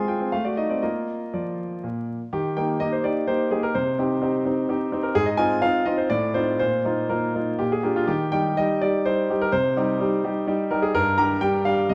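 Vinyl crackle and a moderate recital hall reverb frame this cheerful, graceful fragment of a classical-period piano sonatina in 3/4, where a clear, up-front concert grand with a smooth, vintage tone and deep bass plays solo with rubato, moving from a brief opening phrase into a longer second section at 2.3 seconds that settles back onto an Eb chord at 8.1 seconds.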